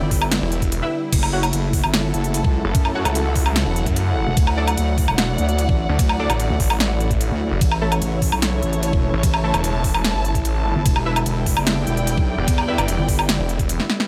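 Heavy wobble dubstep in a half-time 4/4 feel, this aggressive, chaotic excerpt is cut from a longer piece and moves through Em7, F#m7, Dadd9 and A before returning to Em7. Two basses sit up front: a saturated, chorused wobble bass built from square and sine tones, and a snarling distorted saw bass with a growling, detuned unison and a moving notch, entering at 0.4 seconds. The drums pair a knocking, tape-warm electronic kick with a big-room dance kit whose punchy snare, crisp hats, crash, ride and woodblock sound overdriven and up front in a small room ambience. Behind them, huge supersaw chords pump with sidechain compression through a low-pass filter, while a dark, woody studio string section adds bowed vibrato, also pumping. A bold orchestra-hit-like synth stab with ring modulation, a filter sweep and 12-bit sampler grit sits in the background with its own reverb and delay, and a drum fill arrives at 13.8 seconds.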